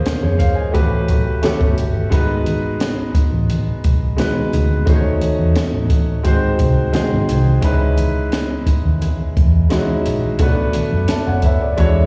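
Lush and romantic, this 12-second cut from a longer 1970s-style soul piece moves at 87 BPM in a straight 4/4, with rich extended chords such as A#m9, G#m7 and C#m9 passing by. An open, up-front baby grand piano carries the accompaniment through plate reverb and slapback echo, over a round, punchy, foam-muted fingered electric bass and a compact cocktail kit with a high-tuned snare, punchy kick and rolled-off top. Very quiet, low-tuned congas played with soft hands add a bright touch from 0.4 seconds, and the whole band sounds like a live gig heard through the venue's PA, with recital-hall and small-room reverb.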